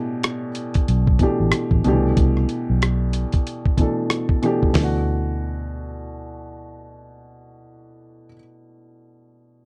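A gritty, compressed, sampler-style soul drum kit with a thumpy kick and rim clicks drives this relaxed, swung neo-soul R&B excerpt until about 4.9 seconds, over a dark, round, foam-muted fingered electric bass and a woody upright piano whose audible action noise adds intimacy to the dry, close 1970s-style studio sound.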